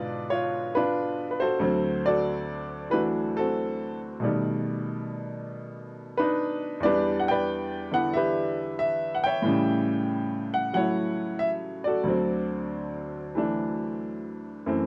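A bright, woody upright piano plays alone and up front, its brilliant tone carrying a short solo jazz passage with a swing feel in 4/4. The chords move from a diminished opening through dominant and altered colors toward a final D7, giving this fragment of a longer piece a warm, swinging mood. Light reverb surrounds the sound, and a worn cassette-tape quality adds warbling pitch drift.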